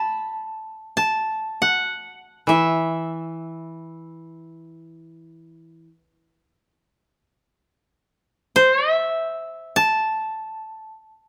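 Solitary and austere, this short passage of Japanese traditional chamber music unfolds in free time, tuned slightly below standard pitch at A4 = 438 Hz. A koto carries the melody high in its register throughout its 11.3 seconds, its fingerpicked tone dry, woody and up front, while a second koto adds a low accompanying note only between 2.5 and 5.8 seconds. Close, detailed microphones and little reverb keep the sound intimate and exposed.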